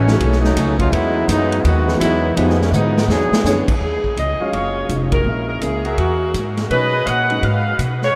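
A vast, echoing space surrounds this brief cut from a longer big band swing piece, its huge ambient reverb giving a sultry, brassy passage a drenched, cavernous glow at a brisk 166 BPM in 4/4 with a swung eighth-note feel. A bright, loose trombone section with light vibrato carries the opening up front, billed as a solo through 3.8 seconds while an upright bass thumps woodily on gut strings beneath, a warm grand piano and a dark, boxy, picked ladder-braced acoustic guitar with old strings sit in the background, and a distant big-band drum kit with dark cymbals and a punchy kick rolls a fill from 2.7 to 3.4 seconds. At 3.8 seconds a bright saxophone section takes the melody with a smooth top, and a mellow trumpet section adds stabs from 4.4 seconds, the band landing an accent at 5.1 seconds. The harmony moves through rich extended chords such as B13, Emaj9, Ebm11 and Gb9 before settling on B69.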